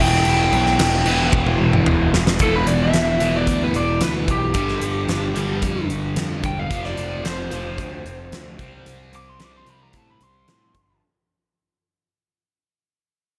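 A straight, driving 4/4 pulse anchors this aggressive hard rock cut from a longer piece, with a huge arena drum kit (a punchy kick, fat snare and bright cymbals in a hall sound) throwing a fill from 1.3 s to 2.4 s. Up front, a double-tracked electric guitar with phaser grinds out the riff over a fuzz-drenched picked bass, while a dark, overdriven lead guitar through a small cranked amp carries the melody. From 2.4 s the lead launches into a solo over E5, G5, F5 and C5 chords as the track fades out in light reverb.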